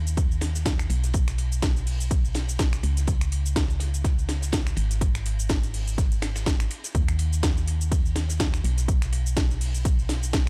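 A lightly swung groove drives this joyful, euphoric piano house excerpt, built on a punchy, up-front electronic kick and a tape-saturated house kit of cabasa, finger snaps, metallic hats and a cracking snare, with a hollow, percussive organ-like FM bass pumping beneath them and a quiet, smooth acoustic soul kit of hi-hat, ride and snare adding dark, rolled-off cymbals, all captured as a dry, gritty small-room recording.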